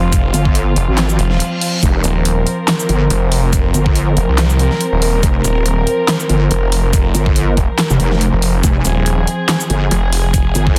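This aggressive, menacing heavy wobble dubstep excerpt in F minor opens with a snarling, growling distorted saw bass and a chamber string section holding sustained chords, the bowed strings carrying 12-bit sampler grit, sidechain pumping and a low-pass filter. At 141 BPM in a swung half-time feel, an overdriven, knocking electronic kick and a layered kit of huge snare, bright hats, handclaps and shaker join a heavy, saturated wobble bass that sits up front beside the saw bass, while a faint reverse cymbal sounds in the background at 1.3 seconds. The dry, dense, heavily limited master keeps the basses and drums pressed close and hard.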